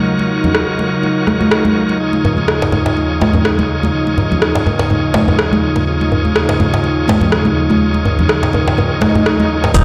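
Heard through a big sound system in a bare stone room with moderate plate reverb, this hypnotic, earthy afro house excerpt moves at 124 BPM in 4/4 with a swung sixteenth-note feel. A detuned sawtooth analog pad holds mellow sustained chords with chorus and sidechain pumping, shifting from Ebm7 to Dbadd9/Eb. Over it, a bright tonewheel organ shouts out lightly overdriven stabs through a fast rotary speaker and tape echo. Ringing, high-tuned congas played with hard hands and a deep house drum kit with metallic, filtered hats, a rim click and a low-pass filtered snare drive the groove, while a deep, soft-handed djembe joins at 2.2 seconds. An electronic swell sounds at 9.0 seconds. Then, from 9.7 seconds, a crisp fingerpicked kora, a dark, gliding synth bass up front, an overdriven deep electronic kick and a grainy, very quiet egg shaker arrive together.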